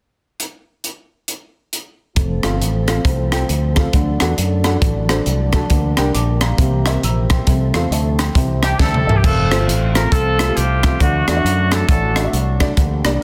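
A crisp, gritty fusion drum kit with bright cymbals, a punchy kick and a high-tuned, soft-clipped snare opens this hopeful, reverent uptempo gospel excerpt alone at 136 BPM in a swung 4/4 in F major, before an up-front fingered electric bass, a dark, short-sustained grand piano, a soft tonewheel organ with key click and slow rotary speaker, and a warm French horn section holding chords in the background come in from about 2.2 seconds, and a tight, vintage jazz-style horn section takes the melody at 8.6 seconds as a drum fill leads into the final stretch, all within a small room and a dense, heavily limited master.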